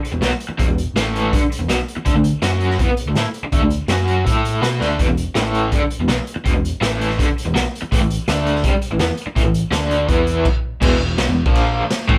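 A raw, swaggering garage rock excerpt that opens on a small-room acoustic drum kit with a boomy kick, a medium-tuned snare, dark cymbals and a gritty, saturated sound with a rolled-off top. A bright, double-tracked electric guitar riff enters almost at once. It is overdriven with a tremolo effect and sits up front, moving through power chords on E, A, D and F#. Beneath it, a dark, round, amped electric bass with its own overdrive anchors the low end. The drums throw in a fill at 4.8 seconds, and the band plays live together in one room with a pumping, moderately reverberant ambience. After a brief stop at 10.5 seconds, the band crashes back in on E at 10.8 seconds and moves to A#, where the recording cuts off mid-phrase.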